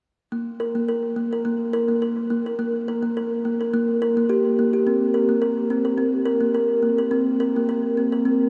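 A meditative world piece for tuned percussion, calm and gentle, moving at 106 BPM in 4/4 with a light swing on the sixteenths, cut from a longer work. A lone kalimba plays from 0.3 to 8.5 seconds, its woody, ringing thumb-plucked tones sitting up front in a vintage, band-limited sound with an analog delay, ranging from Bb3 to Bb4 and moving from an unaccompanied opening to a C5 chord at 4.9 seconds. The dreamy mix is soaked in a huge ambient reverb with an eight-second tail and carries a cassette-tape character.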